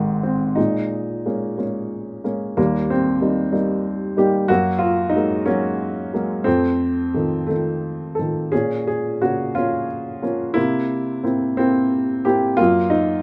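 A rubato 6/8 sway at 56-64 BPM in dotted quarters carries this melancholic, wistful classical fragment in Bb minor, cut from a longer piece, where a solo upright piano, woody and intimate with audible action noise and sitting up front in moderate studio reverb, plays across a span from Ab1 to A4 through a lyrical progression from Bbm7 and Gbadd9 to F7 and C7 before moving to Gb at 12.6 seconds.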